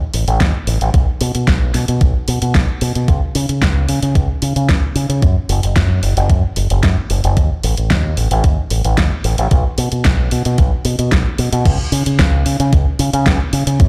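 A bright, punchy fingered electric bass with an envelope filter sits up front in this sensual, cosmic nu-disco excerpt, carrying the groove in a straight 4/4 from the opening moments alongside an overdriven pop drum kit with a fat snare, crash cymbal and hi-hats, re-recorded in a small room. A thumpy, sampler-style electronic kick with overdrive enters at 0.4 seconds. The track moves into a drop at 11.7 seconds, and the whole mix rings as if played on a big sound system in a bare room with large studio reverb.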